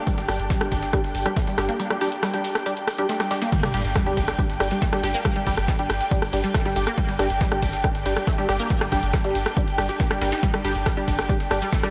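A punchy, up-front analog kick drives this 139 BPM peak-time techno cut, with a driving, industrial mood, dropping out at 1.8 seconds before the drop lands at 3.5 seconds with an impact and a very quiet sub drop. Beneath it sit a round sine sub bass on G1, a squelchy, detuned blip pluck riff with phaser and tape echo tucked into the background, and deep, muted dub chord stabs with chorus and tape echo, all three pumping against the kick. A veiled, con sordino string section bowing with vibrato and a layered techno kit of hats, ride, crash and rim clicks add motion, with a gritty, very quiet sampler-style kit underneath, all soaked in a huge, dreamy reverb around a G chord.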